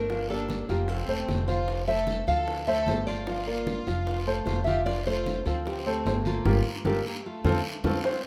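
Sunny and danceable, this short clip of Cuban son and guajira moves with a straight four-beat feel. A fingerpicked nylon-string guitar carries the melody with a full-bodied, deep classical tone, while a studio violin section floats a soft, pure second line beneath it. A grand piano with long, natural sustain rolls out arpeggios across the harmony, which circles through Gm7, F and Dm7. Up front, a woody, growly pizzicato upright bass anchors the low end, and in the background ringing, low-tuned congas and round, distant bongos join a raspy guiro. The band hits an accent from 6.5 seconds, with a drum fill at 7.0 seconds, all set in a light reverb.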